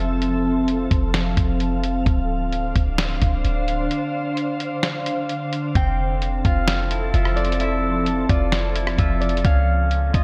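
Soaked in lush hall reverb, this dreamy, floating cloud-rap excerpt sets a glassy FM pad with ensemble chorus and sidechain pumping over a deep, boomy 808-style bass and a muffled, compressed sampler-style drum kit whose thumpy kick drops out from 3.9 to 5.8 seconds, before a bright, ringing Celtic harp melody and dark, clean electric guitar arpeggios, both low-pass filtered and touched with analog delay, join at 5.8 seconds in a blissful half-time haze.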